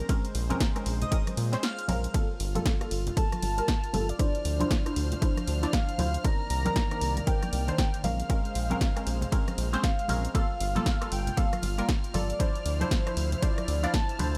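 Dry and close with little reverb, this moody, smooth deep house excerpt swings on a punchy, tape-warm electronic kick (which drops out at 1.6 seconds) and an analog drum machine's hi-hat, ride cymbal, rim click and snare, with ringing, soft-handed congas in the background, a round, deep, up-front analog bass, a muted, detuned dub chord stab with phaser and tape echo, and a smooth, slow-attack pad under minor ninth chords, while a brief airy, dreamy lead with portamento opens the cut, a clear, biting violin section enters softly at 2.1 seconds, and a velvety, chorused sawtooth synth lead with vibrato carries the melody from 3.2 seconds.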